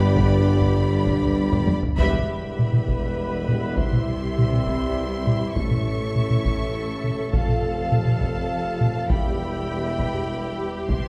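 Moving in a straight 6/8 at 67 dotted-quarter beats per minute, this epic orchestral film-score cue is driven by a close, up-front taiko ensemble struck with heavy sticks. The drums play a fill from 1.5 seconds into a full-band accent at 2.0 seconds. Set in E phrygian, the dramatic, relentless passage moves through G, Em, C, A and F before returning to Em. Lush, bowed violins carry the high melody with smooth vibrato, while a second, more distant violin line sits beneath and an intense viola section adds accompaniment in the background. Dark trumpets punctuate with stabs, and sustained chords come from background trombones and a very quiet, vintage-sounding French horn section. A mellow, roomy tuba, a faint double bass section and background cellos anchor the bass, with the orchestra heard from further back in a reverberant scoring stage as the cut runs to 11.1 seconds of a longer piece.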